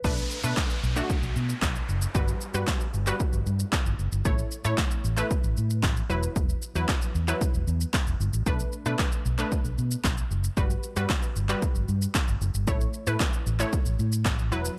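A straight dance-pop pulse drives this energetic, confident excerpt, carried by a tape-warm, punchy analog drum machine with a punchy kick, a punchy snare, handclaps and shaker, all dry and up front. Beneath it, a vintage muted fingered electric bass sits dark, round and amped, pumping with sidechain compression as it holds the low end. A lush unison pluck built from detuned sawtooth layers, a sub octave and a touch of ring modulation plays the accompaniment, with a fast attack, a decaying tail and a filter sweep, breathing with the same sidechain pumping. An electronic downlifter falls away over the first 4.3 seconds, and a very quiet, hollow group handclap, saturated and human, adds texture from 0.6 seconds. The harmony cycles through Bm7, Gmaj7, A and Esus2 before returning to Bm7, all in a dry mix with little reverb.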